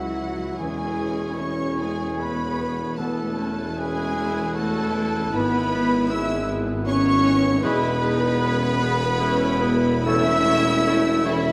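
Opening on a lush, intense violin section singing the melody in this serene, tender excerpt of a slow romantic orchestral movement in 3/4 at 77 BPM with a rubato feel, the music sets that line over a softer, more distant second violin part, a clear oboe, a close-miked clarinet and an airy, very quiet flute ensemble, while smooth violas accompany, bowed cellos, a focused double bass section and a roomy tuba carry the low end, a mellow, punchy French horn section holds chords, a trumpet adds stabs, a bright, ringing harp plays arpeggios, and a trombone section enters at 0.6 s with sustained chords, the harmony moving from C#m into E major by 7.6 s inside a wet concert-hall reverb.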